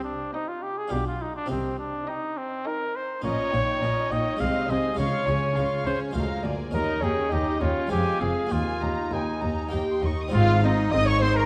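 A clear, up-front solo trumpet opens this festive, brilliant baroque-style concerto movement at 103 BPM in 3/4, over a close, dry, round harpsichord, a gut-string cello section in the background and a close gut-string double bass section, with the harmony starting in C minor before settling into A-flat major at 3.2 s. From 0.3 s the chamber violins enter, one section carrying a high melody in the background and a rich second violin line beneath it, while a viola section with light vibrato fills the inner accompaniment. The period-style bowed strings have a reedy edge inside a moderate concert-hall reverb and a dark, warm production, and the passage reaches a new section on an A-flat chord at 10.3 s.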